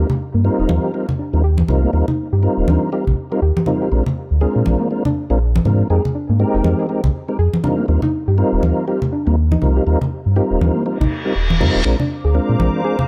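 Deep house with a relaxed, sunny swing, this short cut from a longer piece rides on a deep, full sub bass with octave and bright, compressed congas, while a mellow tonewheel organ plays up-front stabs through chorus vibrato, a slow rotary speaker and analog delay. A soft, round pluck weaves arpeggios bathed in lush chorus and delay over chords moving from Eb69 through Bb9 and Fm11. An electronic reverse cymbal sounds at 11.0 seconds, and a hollow, flute-like pad with ensemble chorus enters at 12.2 seconds, all in light reverb.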